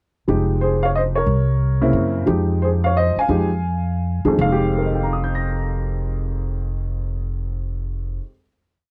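A swung 3/4 pulse at roughly 154-181 BPM carries this brief, complete jazz waltz in F minor, with a cool, smoky mood. The upright bass plays pizzicato in a two-feel, its steel strings giving a woody, up-front tone in the low register. The upright piano, warm and natural, states a motif-based melody built from song-like phrases, partly doubled in thirds, alongside syncopated comping in drop-2 voicings that move through Fm9, C7b9 and back to Fm9. The tempo slows from 2.3 to 4.4 seconds, where the players settle onto a final chord that holds until 6.7 seconds, and the piano sounds until 8.5 seconds. The dry, close sound recalls a 1970s studio, with little reverb and both instruments sitting near the listener.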